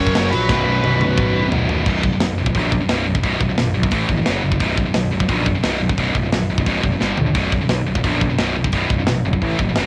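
Heavy metal, aggressive and dark, recorded at home on cassette with light reverb. For the first 1.5 seconds a nasal lead guitar with a parked wah carries the melody while a bluesy, distorted second lead sits in the background with tape echo. Beneath them, two high-gain picked guitars hammer a riff over B5, A5, F#5 and G5 power chords, one up front and bright, the other scooped and very quiet, with a growly fuzz bass and a tight, gritty metal drum kit whose rolled-off top frames fills at 0.5 and 7.0 seconds.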